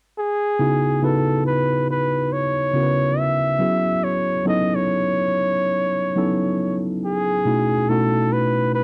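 Smooth and sultry, this slow R&B passage at 70 BPM in C# minor, cut from a longer piece, sways with a swung sixteenth-note feel as a jazz-style solo flugelhorn with light vibrato, a silky top and slapback echo carries the melody from 0.2 seconds, joined at 0.6 seconds by a worn, slightly out-of-tune tine electric piano played clean through a combo amp, voicing C#m9, F#7sus4 and B9sus4 chords, both parts up front in a dry, close, 1970s-style studio sound with light reverb.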